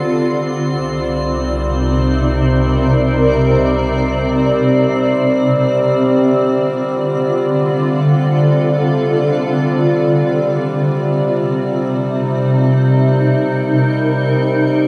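Soaked in a huge, dreamy reverb, this spacious, reflective ambient excerpt in free time and C dorian opens with a bright, cloudy granular pad holding sustained chords up front above a reedy, breathing harmonium drone, while a dark, rumbling bass drone with phaser fades in from 0.9 to 5.0 seconds and a faint, glassy texture of drifting overtones glimmers high above until the chords shift from Cm7 to Dm7 at 5.1 seconds, later returning to Cm7.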